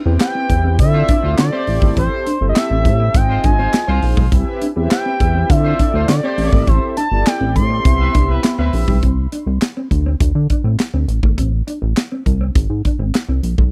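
Early-eighties boogie funk with a smooth, feel-good mood, this short cut sets a punchy, up-front drum kit with handclaps and a high-tuned snare under a glossy, dark synth bass, a clean, fingered guitar riff and round, detuned synth brass, while a nasal, expressive synth lead carries the melody and a distant, roomy horn section adds a second line until the synth brass and horns stop at 9.0 seconds, leaving bass, guitar and drums for the closing section in a dry, close room.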